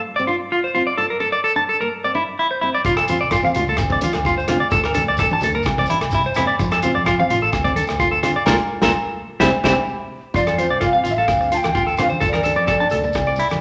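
A straight 4/4 groove at 128 BPM in F major carries this sunny highlife guitar band excerpt, where fingerpicked nylon-string guitar and an up-front, clean semi-hollow electric guitar playing arpeggios through spring reverb open together before the punchy vintage drum kit, a background fingered electric bass, a grainy shekere, ringing close agogo bells and low-tuned, saturated congas all join around 2.8 seconds. The band hits an accent from 8.5 seconds, capped by a drum fill, and at 10.4 seconds a breathy, hollow alto recorder with vibrato and chiff takes the melody. Chords cycle through F6, Dm7, Bbmaj7/D and Cadd9 in a large, wet studio reverb with a soft, rolled-off top.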